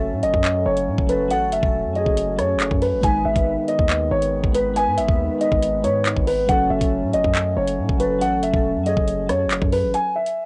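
A tense, menacing drill hip hop excerpt at 139 BPM in a half-time feel, cut from a longer piece and shifting between F#m and G#m chords. A dark, boxy grand piano carries the melody up front, while glassy digital keys with chorus and a filter sweep fill in the accompaniment, and a mellow French horn section holds sustained chords in the background. Underneath, a hard-hitting 808-style bass with a punchy sine body and noise layer decays after each fast attack. The electronic drill kit enters at 0.2 seconds, putting a knocking kick, metallic hi-hats, handclaps and rim clicks up front. The sound is that of a home cassette recording in a moderate booth ambience, tape-colored and dulled at the top, and the piano and drums carry on briefly into a short break after the other parts stop near 10 seconds.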